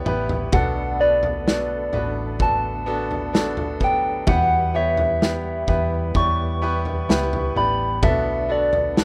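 Heartbroken and emotional, this slow pop ballad in B minor moves at 64 BPM, with a short drum fill from a loose, punchy indie kit in a small, pumping room marking the start as everything settles over a simple Em to Bm7 progression. A gentle, warbling vintage FM synth lead with a sub octave and chorus carries the melody up high, supported by a brilliant, open grand piano, a round, dark hollow-body electric bass, and a very quiet, lightly overdriven tonewheel organ with key click, percussion and a fast rotary speaker. The rough home-demo mix is dry, with little reverb, and this is a short section cut from a longer piece.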